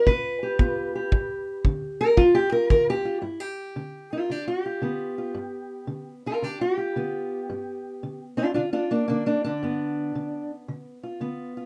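A swung 4/4 groove at 113 BPM drives this rollicking, laid-back acoustic country blues in G mixolydian, cut from a longer piece and opening on a G7 chord. A dark, boxy parlour steel-string acoustic guitar, fingerpicked and up front, carries the melody from G2 to B4 throughout, taking a solo spot through 3.2 seconds, while a tight, brushed acoustic kick drum sits up front from 0.1 to 2.9 seconds. The sound is dry and rough, with the feel of a home demo.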